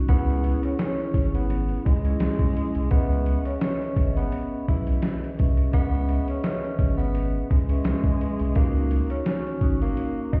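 Tough and dark, this boom-bap hip-hop excerpt swings at 85 BPM in C# dorian, with a gritty, compressed sampler-style drum kit with a thumpy kick and fat snare and a round sine sub bass sitting up front, a mellow soft-mallet vibraphone with slow motor vibrato and cassette-tape character accompanying over E6, C#m7 and D#m7, and a breathy, raspy tenor saxophone with a growl, scooped notes and tape echo carrying the melody, the whole mix sounding muffled as if heard through a wall.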